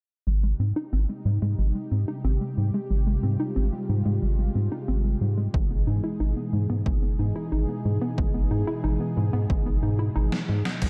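A round, deep analog bass sits up front in this nostalgic, uplifting synthwave excerpt, its nasal, dark tone pumping with sidechain beneath a filter sweep. Around it, a smooth, detuned sawtooth pad holds sustained chords with a slow attack and long release, softened by chorus and breathing with the same pumping motion. A warbling, lo-fi pluck traces arpeggios through chorus and delay, its short decay and dusty character adding a hazy shimmer, and both pad and pluck are also filter-swept. At 91 BPM in a straight 4/4, the harmony moves from Abmaj7 to Emaj7/G# as a punchy, overdriven electronic kick joins at 5.5 seconds. The kick briefly drops away near the end, and a gated 80s drum machine bursts in at 10.3 seconds with an overdriven fill of snare, hi-hat and crash steeped in gated reverb. The production is dark and warm, with a light reverb around it.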